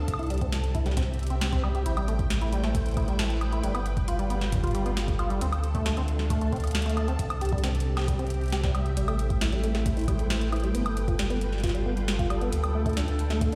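Heard through a big sound system in a bare room with a large, echoing studio reverb, this eerie, intricate IDM excerpt at 135 BPM in A minor lays a silky string machine's sustained chords with ensemble chorus over a round, up-front sub bass, a soft electronic kick, a booming analog drum machine with crisp snare, metallic hats and woodblock through digital delay, and rubbery, resonant acid-bass arpeggios with a filter sweep, before a bubbling stepped-filter texture slips into the background at 9.0 s.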